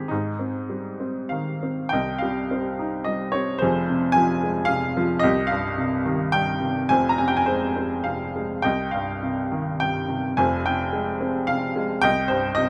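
A clear, woody upright piano plays alone from the first moment, slightly detuned and up front, in a short lyrical classical passage in F minor that still feels sunny and hopeful, moving in a rubato 3/4 at around 94-112 BPM. After an opening Abmaj7, the music turns at 1.9 seconds to a longer stretch that sways between Cm and Fm, colored by an Fmadd9, across a range from F1 up to Bb5. Close, detailed microphones and light reverb keep the instrument present until the passage is cut off at 12.7 seconds.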